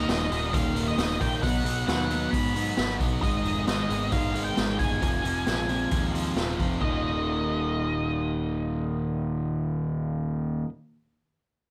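A straight 4/4 pulse at 134 BPM drives this cathartic, anthemic quiet-loud alternative rock excerpt, where a raw garage drum kit with a boomy kick and high-tuned snare plays up front until 6.9 seconds, a biting, double-tracked overdriven guitar riff and a punchy fuzz picked bass push through chords moving from Eb to B, Abm and Fm, an electric guitar through a small old amp picks slightly broken-up arpeggios in the background, and a dark octave-fuzz lead guitar carries the distorted melody high above, all set in light studio reverb.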